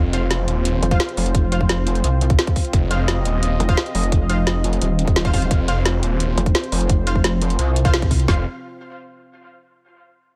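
A dry, close-up mix with little reverb opens this short cut from a longer dark technical drum and bass track, running at 173 BPM in straight 4/4 and tuned to A4 = 438 Hz. The mood is tense and mechanical, with a drop spanning the first 8.3 seconds. A snarling distorted saw bass, aggressive and growling with a moving notch, holds the low end from the start, and from 0.8 seconds a pulsing pluck wobble bass with a heavy, saturated, chorused tone joins it up front. Two layered electronic kits carry the beat, one with metallic hats and a woody snare and the other, entering at 0.9 seconds, adding a tight kick and its own snare, both re-recorded in a small room. Above them a deep, moody analog pad holds sustained chords through chorus, vintage 12-bit sampler grit and sidechain pumping, while a bold, punchy, orchestra-hit-like synth stab flashes brightly through built-in reverb and dub echo. A band accent lands at 7.9 seconds, just before a brief closing section.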